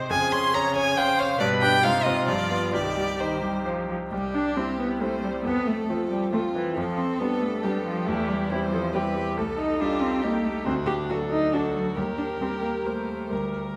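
In a quick 3/4 at 137 BPM with a rubato feel, this stormy, restless passage from a classical-period piano quartet opens in C minor before turning to C major at 4.1 seconds, its chords moving from Db/F through G7 and Cm into brighter territory that reaches D and Eb. A smooth, even violin carries the melody up front with vibrato, while an expressive cello sings a second line with portamento, and a focused, distant viola joins a brilliant concert grand piano, polished and present with deep bass, in the accompaniment. The quartet sounds in a wet recital hall with a 1.5-second reverb tail, and the piece is cut from a longer work.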